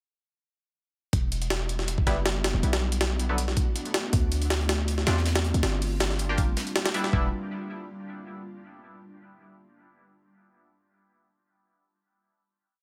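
A heavily chopped jungle breakbeat drives this short, nostalgic drum and bass piece in a straight four, its compressed, pitched-up sampler kit sitting up front with a thumpy kick, high-tuned snare and gritty, tape-tinged character, as though re-recorded in a large room. Beneath it, a deep, boomy 808-style bass built on a sine with a noise layer plays long gliding notes that strike fast and decay, arriving with the drums at the drop at 1.1 seconds. An ethereal, airy pad of detuned sawtooth and triangle voices with a sub octave fades in slowly and sustains mellow chords through ensemble chorus and its own reverb, moving from Em7 through Bm7, Dm7 and Gm7. From 2.1 seconds, sparse, bright chord stabs with a nasal, band-passed bite punctuate the groove, one shape shifted in parallel and trailed by chorus and dub echo. A very quiet acoustic indie kit with a fat snare and pumping room sound adds a looped, edited break underneath from 4.1 seconds, before the piece settles on a final Em7 chord in a dry, atmospheric close.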